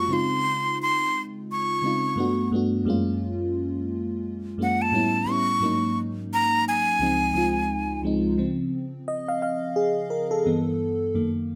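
A breathy jazz flute and an FM electric piano layered with a soft pad open this soulful, sensual R&B excerpt together, with a gentle swing on the sixteenth notes. The flute carries the melody high in its range, its metallic, crisp attack marked by a touch of chiff and a singing vibrato, sitting up front in the mix. Beneath it, the electric piano supplies lush, dreamy chords with a full-bodied, mellow tone, fast-striking notes that decay softly, and a shimmer of chorus. The harmony drifts through rich extended chords such as Dbmaj9, Gmaj9, A9 and Ab7sus4 before settling back on Dbmaj9. The flute falls away at 8.0 seconds, and from 8.4 seconds the electric piano plays alone over Dbmaj7 and G69 until the close at 11.6 seconds, all within a moderate studio ambience.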